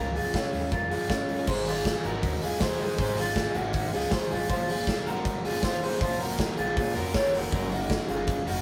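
A rough rehearsal-room recording with light reverb catches this brief, breezy and nostalgic slice of jangly indie pop in Ab mixolydian, moving at 159 BPM in a straight 4/4 through chords of Db, Ab, Bbmadd9 and Gb. Up front, a twangy, slightly broken-up electric guitar through a small old amp picks arpeggios, while a big rock kit, entering at 0.2 seconds, brings a punchy kick, medium-tuned snare, hi-hat and bright crash cymbal from a big room. Behind them, a crunchy overdriven guitar picks out accompaniment and a woody pizzicato upright bass with steel strings anchors the low end.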